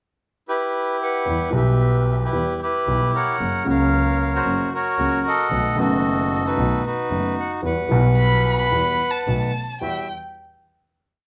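A sincopa rhythm at 113 BPM in rubato 4/4 drives this short, melancholic and sultry tango in E harmonic minor, where a reedy, up-front bandoneon opens with a pickup at 0.5 s and sings motif-based song phrases, a smooth, vintage grand piano and a biting, nasal, earthy bowed double bass join at 1.3 s with the sincopa accompaniment, and an expressive violin with warm vibrato and portamento enters at 8.2 s to answer in the melody's rests before everything settles on a final Emadd9 chord in a wet club reverb.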